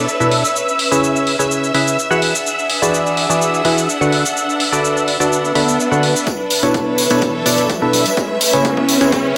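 Piano house at 126 BPM in B dorian, this energetic, soulful passage is cut from a longer piece and rides a straight 4/4 feel over chords moving from Bm11 through C#m7 to D6. Up front, a hollow, organ-like percussive stab plays the riff with a fast, decaying attack, colored by chorus, phaser and delay, while a filter sweep runs across it through the opening 6.3 seconds. Behind it, a shimmering vintage string machine holds sustained violin chords with a slow attack and ensemble chorus, and a lush symphonic string section adds a smooth, bowed texture with vibrato, both pumping with the sidechain alongside the stab. An analog electronic shaker and hi-hat, re-recorded in a small room, tick along from the start, and an electronic swell and riser arrive at 5.5 seconds, leading into a build-up from 6.3 seconds. At 6.3 seconds a punchy analog kick drum and a close, dry tambourine join in, all set in a moderate digital plate reverb.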